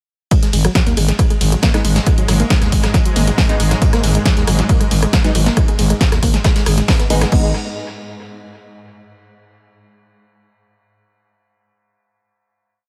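A punchy, tape-toasted four-on-the-floor kick drives this dark, hypnotic peak-time techno piece at 137 BPM in G# minor, joined by a growling, thick FM bass on the off-beats, programmed hats, snare, rim, ride and crash from an analog drum machine, a distant, roomy brushed breakbeat loop, a warbling lo-fi pluck riff whose 7-step sequence drifts against the bar, a swarming, tense drone entering at 1.2 s, and aggressive detuned rave stabs from 1.7 s, with much of it sidechain-pumping in an echo-heavy mix until the drop resolves onto a final G#m chord at 7.3 s.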